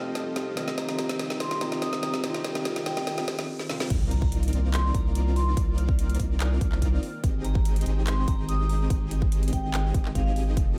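Bittersweet and lush, this future bass excerpt moves at 144 BPM in a half-time feel in C minor, opening with a build-up where a clean, tremolo-laden tine electric piano, a very quiet breathy pad, a huge detuned supersaw riff with 12-bit sampler grit and a metallic, ringing vibraphone melody under a filter sweep ride over trap drums with woody snare, metallic hats, handclaps and crash, plus a faint riser. At 3.9 seconds the drop lands on Cm11 with an impact, as the electric piano stops and a deep, saturated sub bass and a punchy, overdriven electronic kick enter. The supersaw and vibraphone pump against them while the pad sustains, before the harmony shifts to Abmaj7 at 7.0 seconds. Tape echo on the electric piano, supersaw and vibraphone and a plate reverb soak the mix in a dreamy haze, while the sub bass sits up front.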